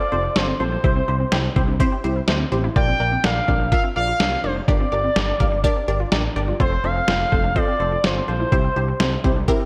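An expressive portamento lead carries the melody of this upbeat synth-pop excerpt from the first moment. Beneath it, two unison plucks begin together: one plays lush, chorused accompaniment chords, and the other traces very quiet, wave-folded arpeggios. A smooth gliding synth bass enters at 0.1 s with a mellow sawtooth-and-triangle tone, vibrato and sliding notes. A lo-fi sampler-style drum kit joins at 0.4 s with a thumpy, pitched-down kick and a medium-tuned snare, wrapped in gated reverb. At 125 BPM in a straight 4/4, the harmony moves through F, C, Bb and G minor before returning to F and C, while the lead's vibrato, chorus and digital delay sit over detuned sawtooth plucks that snap and decay. A moderate plate reverb and digital ambience lend a bright 1980s-style digital sheen, with the drums, bass and lead placed up front.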